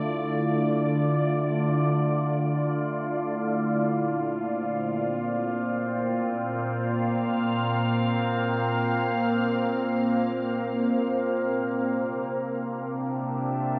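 A lone evolving wavetable pad fills this excerpt, its detuned, sine-based tone morphing and warbling with a vintage character as it sustains through slow attacks and long releases. This is serene, melancholic ambient music in free time, tuned to A4 = 441 Hz and taken from a longer work. The pad, bright and up front, spans Bb2 to F5 and carries a phaser, its own built-in reverb and tape echo. It moves from Dmadd9 to Bbsus2 at 3.8 seconds, then settles on Cadd9 at 11.4 seconds. A huge, wet ambient reverb with an 8.1-second decay surrounds it, and the overall production is dark and warm.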